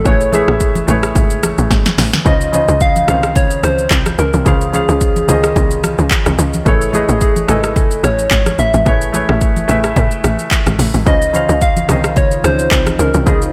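A punchy, overdriven deep house drum kit with a deep kick, metallic hats, handclaps, rim clicks and shaker drives this soulful amapiano groove at 109 BPM in Db major, where a tight, percussive log drum bass, a present baby grand piano, a round keys-like synth lead with chorus and delay, ringing congas in the background, and a moody detuned pad arriving at 12.4 s fill out the arrangement as the harmony moves between Amaj9 and Dbmaj9 chords, with a drum fill at 1.7 s.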